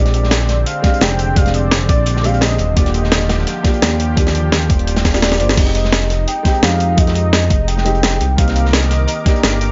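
A rolling breakbeat groove with a light swing on the sixteenths drives this melancholic liquid drum and bass fragment, built from three layered kits: a gritty, pitched-up jungle sampler-style kit with crash, hi-hat and snare sits up front, while a saturated, rolled-off acoustic breakbeat kit with filtered hats and snare murmurs in the background. An overdriven, knocking electronic kick enters at 0.8 seconds and sits up front in the mix, and a drum fill at 5.0 seconds marks the midpoint. Beneath it, a smooth sawtooth-and-triangle synth bass glides between notes with portamento and vibrato, its moving notch adding a dark undertow. A worn, boxy grand piano plays mellow accompaniment across chords moving from Bb13 to Ebmaj9, Fm9 and Cm9, cushioned by a thick, warbling vintage pad of detuned unison saws that pumps under sidechain and chorus. On top, a velvety detuned synth lead sings a high melody with chorus, vibrato and dub echo, all set in a small, lightly reverberant room.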